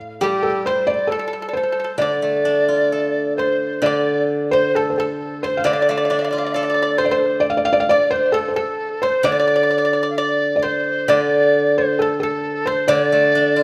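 Bathed in a moderate concert-hall reverb, this wistful, graceful excerpt of Chinese traditional chamber music in a loose rubato 2/4 opens with a bright, silvery steel-string zither ringing up front in accompaniment, joined at 0.2 seconds by a felt-muted upright piano carrying the melody with a soft, intimate tone and audible action noise, a large dizi adding a second line with a buzzing membrane, vibrato and a crisp attack, and a dry, percussive pipa played with fingerpicks.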